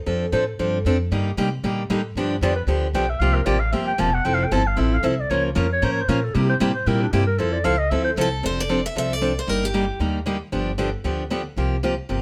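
Lively and playful, this excerpt of acoustic string swing in the jazz manouche style runs at a brisk 230 BPM in F major, with a swung eighth-note feel. An upright bass with gut strings anchors the low end, its pizzicato tone woody, dark and thumpy, while a picked steel-string acoustic guitar sits up front in the accompaniment, bright with audible finger squeak. A mellow clarinet takes the solo from 0.1 to 8.4 seconds, using subtone, light vibrato and scooped notes for a vintage jazz character. As the clarinet drops out, a second picked acoustic guitar with a warm tone steps forward to carry the melody from 8.2 to 10.0 seconds. The harmony moves through colorful changes such as Ebmaj7/G, G7 and C7sus4, all set in a light reverb.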